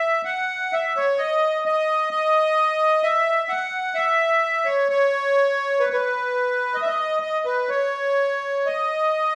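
A solo accordion carries this short excerpt of Celtic folk music, its reedy, sweet voice sitting up front with a light tremolo tuning that gives each note a gentle shimmer. The mood is pastoral and tender, unfolding at a slow 64 BPM in 4/4 with a rubato feel that lets the phrasing breathe freely. The melody stays in a narrow band from B4 to F#5, keeping the line airy and intimate. A moderate recital-hall reverb, about 1.4 seconds long, surrounds the instrument with a soft sense of space. Cut from a longer piece, the passage lasts just 9.3 seconds and feels like a quiet glimpse into a gentle tune.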